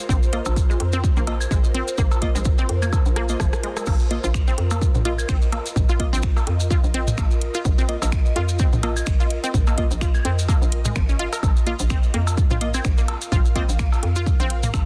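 An airy, phaser-tinged pad hovers over a Bbsus4 chord as this quirky, sparse minimal techno excerpt at 127 BPM with a swung 16th feel kicks in, bringing a punchy, up-front kick, a hollow, bouncy FM bass, a squelchy, resonant blip pluck riff with dub echo, crisp wavetable chord stabs with delay, grainy maracas, a house kit with metallic hats, finger snaps and rim clicks, and roomy analog cowbell, claves and toms, while a sidechain pump breathes through the pad, pluck and bass, with a drum fill at 3.2 seconds in a dense, heavily limited mix.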